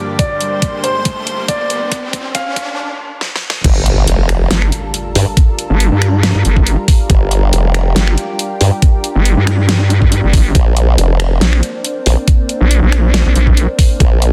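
A thick, detuned unison pad pumping with sidechain and an electronic riser open this menacing, chaotic heavy wobble dubstep excerpt in G minor at 139 BPM, half-time with a light swing. A dark, mellow baby grand piano melody briefly passes through a low-pass filter sweep and tape echo over drum fills and a knocking, up-front kick during the build-up. The drop at 3.6 seconds lands with an impact, the drum kit's huge snare, bright hats, crash and finger snaps, and two overdriven, chorused wobble basses, one a sawtooth formant sweep and the other a nasal vowel sweep entering at 4.5 seconds, in a dense, heavily limited, dry mix.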